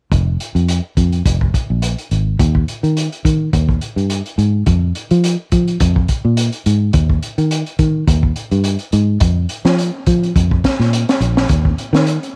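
A round, foam-muted fingered electric bass sits up front in this defiant, hypnotic afrobeat excerpt, ranging from F1 to F3 over a gritty, saturated breakbeat kit of hi-hat, punchy kick and high-tuned snare, recorded dark with a rolled-off top in a small room, the whole mix kept dry and close with a lightly swung sixteenth-note feel.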